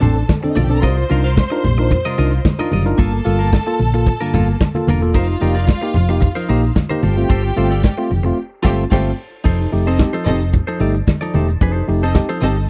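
Danceable and driving, this short disco cut at 111 BPM sets a round, punchy hollow-body bass and an up-front soul drum kit with tight kick and crash under a barky tine electric piano, a clean semi-hollow guitar with spring reverb, lush bowed strings carrying a second line, and very quiet congas, moving through jazzy chords like Bbmaj9 and Cm11 to a band accent at 8.4 seconds before settling on F7 at 9.5 seconds in a dry room.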